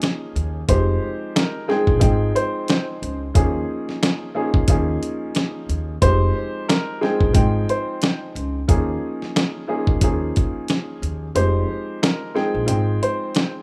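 A rough home demo mix in a small room gives this short boom-bap hip-hop cut a close, unpolished sound, dark and reflective in mood. At 90 BPM in 4/4 with a swung 16th-note feel, a dusty, sampler-style drum kit sits up front, compressed and gritty, with a thumpy kick, a fat snare and hi-hat. A dark, mellow upright piano plays the accompaniment, slightly detuned and filtered, alternating between Eb9sus4 and Fm9 chords in F minor. Underneath, a pizzicato upright bass with steel strings adds a woody low line from 0.4 seconds. A second upright piano, warm and open with filtering and tape echo, carries a narrow melody that enters at 0.7 seconds. Near the end the kick drops out at 11.4 seconds.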